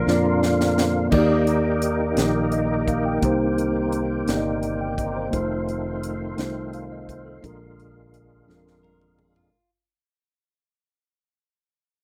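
A mellow tine electric piano accompanies this soulful, hopeful slow gospel excerpt in 6/8 at 57 BPM in Eb major, joined by a thick tonewheel organ with light overdrive, key click, chorus vibrato and slow rotary speaker, a round, punchy fingered electric bass, and a tight, dry funk drum kit with a high-tuned snare that opens and closes with fills. The chords move from Ebmaj7 through Cm7 and F7 to Bb7 under a fade-out beginning at 1.1 seconds, and a bright, twangy clean electric guitar with slapback echo slips in faintly in the background at 8.8 seconds, all heard in a rough home demo mix with moderate studio reverb.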